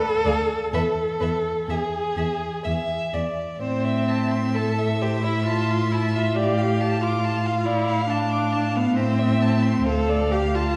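Set in a slow, rubato 3/4 that moves at 62-70 BPM, this short passage from a longer romantic string quartet movement in A minor carries a solemn, melancholic air. The viola opens the accompaniment, with the cello bass and both violins joining by 0.3 s, all four bowed by single players with vibrato. The cello sits close and up front in its low register, smooth and even, while the viola, also up front, shapes its part with expressive portamento. One violin holds the melody high in the register with a smooth, polished top, and the other violin traces a supporting second line further in the background. The harmony moves from an E chord into A minor at 3.6 s, then through D minor over A before returning to A minor and closing on D minor seventh at 9.8 s. A lush recital hall reverb and a listening position further back in the room lend the ensemble a soft, spacious bloom.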